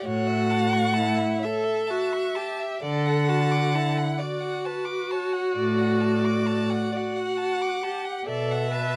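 All four players begin together at the opening of this short passage from a slow, romantic classical movement for string quartet, a lyrical and serene piece in a lilting 12/8 with flexible rubato. The first violin carries the melody with a rich, focused tone, singing vibrato and a smooth upper register. Beneath it, the second violin plays a warm, expressive second line coloured by portamento, while the viola, placed up front, supplies a smooth accompaniment. The cello anchors the bass with a clear, even sound. The harmony moves from A to D at 2.8 seconds and reaches Bm7 at 8.3 seconds, all captured by close, detailed microphones in a nearly dry acoustic.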